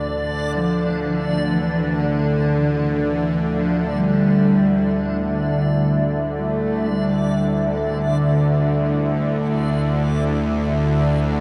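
Cavernous and desolate, this dark ambient drone in free time centres on a Dsus2 chord, heard as a cut from a longer piece set in a vast, echoing cathedral-like space. A tense, nasal bowed-like drone sits up front in the low register with vibrato, beneath a deep, detuned pad with chorus and a reversed, granular texture that glints luminous and dreamy in the upper register. A single woody, boxy cello with vibrato carries a dark melody from 0.5 to 7.9 seconds through a diffuse ambient delay.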